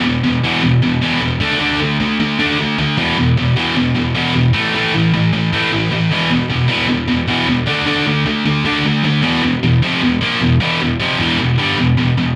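Epic and relentless, this metal excerpt drives at 153 BPM in straight 4/4, carried entirely by a lone scooped, high-gain electric guitar playing from 0.0 to 12.3 seconds. The bright, distorted, double-tracked guitar sits up front with tape echo in a dry space, its picked power chords moving among E5, D5 and A5 before settling onto E minor at 9.2 seconds, where a new section begins.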